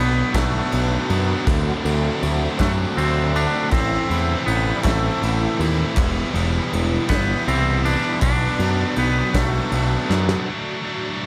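A growling, overdriven picked bass sits up front in this short cut of bittersweet, restless indie rock, moving slowly at 53 BPM in a straight 6/8 through Bm7, D7, Am and Em7. Above it, a clean, twangy electric guitar carries the melody with a fingered touch and slapback echo, while a bright, crunchy overdriven guitar plays a riff in the background with subtle chorus and its own slapback. A scooped, high-gain distorted guitar adds a second picked riff. A vintage string machine set to cellos holds dark, full-bodied, very quiet chords with a soft attack and ensemble chorus, and a glockenspiel played with soft plastic mallets rings a faint bell-like second line high above. A soft brush kit with a punchy kick and medium-tuned snare enters at 0.3 seconds, joined by distant, hollow group handclaps, and the drums close with a fill at 10.1 seconds, all set in light reverb.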